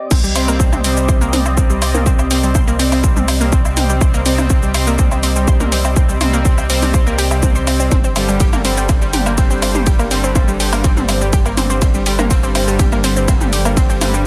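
A punchy, tape-warm electronic kick sits up front in this driving, cinematic melodic techno drop at 123 BPM in C minor, cut from a longer piece and joined by an overdriven deep house kit of hi-hat, ride, crash, shaker, toms and woodblock in a small room. A round, dark analog bass holds low C under detuned, warbling unison pluck arpeggios with digital delay, while bold, fat analog synth brass stabs enter at 0.4 seconds with chorus and vibrato. In the background an evolving, resonant pad sustains chords with a filter swell, the pumping bass, pluck, brass and pad moving from Cm to Gsus4 at 7.9 seconds in a dense, heavily limited mix.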